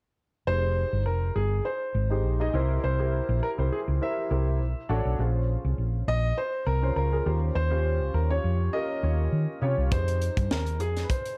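A dark, warm small-room sound carries this slick, urban piece of polished 1980s jazz-funk pop in F minor at 102 BPM with a light swing, where a natural, up-front concert grand sings the melody over a mellow second grand piano treated with analog chorus, a round, amped hollow-body electric bass moves from Fm9 through C7, Bm7, Bbm7 and Eb13, and a tight funk drum kit with a high-tuned snare enters only at 9.9 seconds as the chords return to Fm9 in this short cut from a longer piece.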